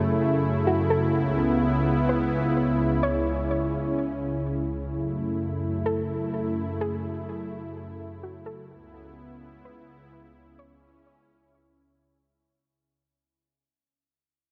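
A mellow analog pad sits up front, holding smooth, detuned sawtooth chords with a slow attack and a chorus sheen across the span from C#2 to E4 for the full 12.5 seconds. This spacious, hazy hip hop fragment, cut from a longer piece, moves at 127 BPM in 4/4 with a half-time feel, and its harmony drifts between F#m7 and C#m7. At 0.7 seconds a soft, round pluck enters in the background, carrying a gentle melody between F#4 and C#5. The pluck blends triangle, sine, sawtooth and square tones with a noise layer and sub octave, and its fast attack and short decay pass through chorus, delay and a low-pass filter for a dark tone before it stops at 11.0 seconds. A cathedral reverb with a long 4.6-second tail soaks the dreamy mix, and the whole passage is fading out from start to finish.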